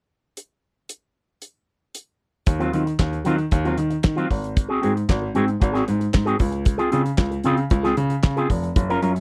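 A damped 1970s drum kit opens this glamorous, danceable disco excerpt alone at 0.4 s, its fat snare, tight kick, hi-hat and handclaps sitting dry and up front in a straight 4/4 groove. At 2.5 s a dark, clean, fingered electric guitar run through an envelope filter joins as accompaniment, while a natural-sounding baby grand piano with short sustain carries the bass line through Ebm69, Ab7 and Dbmaj7. The close, dry studio sound keeps every part present and intimate, in true 1970s style.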